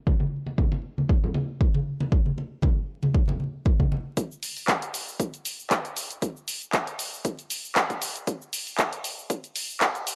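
Hypnotic and smooth, this short cut from a longer house track rides a gentle 16th-note swing in 4/4. A punchy, layered electronic kick drum sits up front from the start, joined by bright, saturated congas played with soft hands until about 4.0 seconds. A filter sweep runs through this opening stretch. At 4.2 seconds a deep house drum kit joins the groove with handclaps, a shaker and dark hi-hats, all filtered and set close, as the music builds up to the cut at 10.2 seconds. Light reverb, vinyl crackle and a touch of lossy grit give the whole recording a worn, dusty surface.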